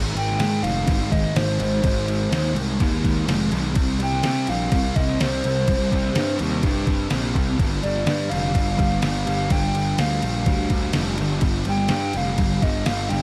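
Shoegaze and dream pop rock at 125 BPM in a straight 4/4, melancholic and hazy, in this short cut from a longer piece tuned to A4 = 444 Hz. A thick, double-tracked fuzz guitar riff with distortion and analog chorus sits over an overdriven, up-front picked bass. At 0.2 s a detuned 8-bit drum machine with a thumpy kick and fat snare, re-recorded in a small room, enters alongside a reedy, woody FM lead whose soft-attack, sustained melody carries chorus, vibrato and tape echo. Light reverb and a dark production frame a chord movement from Ab to C5 to G7 with the third omitted.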